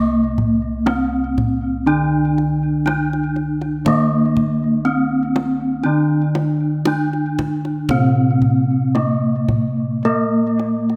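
A slow, straight 4/4 pulse at 54-60 BPM carries this ceremonial, shimmering stretch of Javanese gamelan, cut from a longer piece, with a kendang adding tight, hard-handed drumming from 0.4 seconds. Up front, a bronze metallophone struck with a wooden mallet rings out the melody, its paired tuning producing shimmering beats, carried on a touch of tape echo, while a second metallophone played with padded disc mallets gives a mellow, soft, dry accompaniment beneath. Round, beating bossed gongs with a boxy small-room warmth hold the bass, all captured by close, detailed microphones in light reverb.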